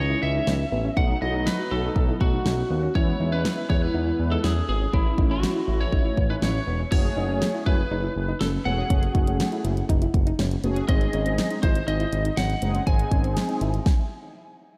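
A straight 4/4 pulse carries this cool, nocturnal synth-pop excerpt, with an electronic pop drum kit arriving at 0.5 seconds to sit up front with a punchy kick, fat snare, hi-hat and crash cymbal. A smooth, nasal synth bass with a touch of vibrato anchors the low end just as prominently, while a dark, detuned synth brass with chorus and phaser holds mellow, evolving chords underneath. In the background, a soft, round pluck traces gentle arpeggios through chorus and a diffuse ambient delay. Over it all, a bright, twangy lead guitar, slightly broken-up and compressed, carries the melody, its picked notes trailing into the same hazy delay. The harmony moves from C#madd9 through B7, E and A, then shifts to F#madd9 at 6.9 seconds and G# at 10.9 seconds, and a lush hall reverb soaks the whole mix in a dreamy glow before the music comes to a stop at 13.9 seconds.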